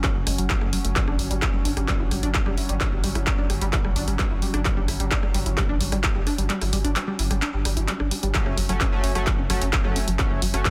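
A distorted, layered electronic kick drum, re-recorded in a large room, drives this relentless, dark peak-time techno excerpt in a straight 4/4 metre. Around it, a punchy analog drum machine sits up front with tape-tinged handclaps, hi-hat and rim click, its hats and cymbals pumping with sidechain compression. A round sine sub bass with tube saturation and a low-pass filter holds the low end. Above it, a tight, detuned sawtooth-and-square sequenced synth riff pulses with chorus, dub echo and sidechain pumping. Deep in the background, a moody ambient pad drone with a sub octave, slow attack and long release breathes through chorus and reverb. The kick drops out from 6.5 to 8.3 seconds, and at that return an edgy, bright sync-sweep polysynth enters with nasal, filter-swept stabs soaked in delay, all within a dense, heavily limited modern master with light reverb.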